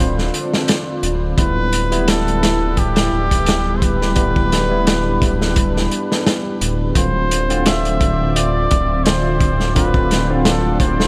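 Melancholic, smoky trip hop at 86 BPM in D dorian, where a soft, veiled cup-muted trumpet carries the melody through tape echo over a bright tine electric piano with tremolo and 12-bit sampler grit, a moody analog pad with chorus in the background, a deep, rumbling detuned saw bass holding D1, and a crunchy, saturated breakbeat kit entering at 0.2 s, all drifting through a dreamy, reverb-soaked mix as the chords move from Dm7 to Em/D and back.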